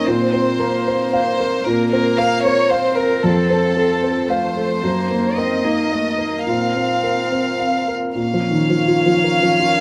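A woody, up-front upright piano carries the accompaniment in this reflective, melancholic neoclassical excerpt at 112 BPM in a rubato 3/4, as an intimate chamber violin section sings the smooth-topped, lightly vibrato sul tasto melody over a soft-attack solo cello second line and an airy, breathy, chorused pad of sustained chords in the background, all in light reverb, circling Bbsus2, F and Ebm/Gb before turning to Bbm at 8.2 seconds.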